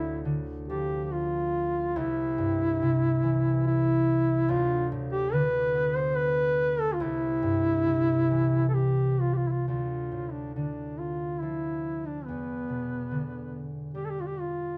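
A wet stone-room reverb surrounds this live, single-room recording of a haunting, longing Celtic slow air in a loose, rubato triple time, cut from a longer piece. Up front, a mellow duduk carries the solo melody in folk style, with vibrato, scooped notes and a smooth top. A warm, ringing concert harp is fingerpicked beneath it, moving into a new section at 9.7 seconds.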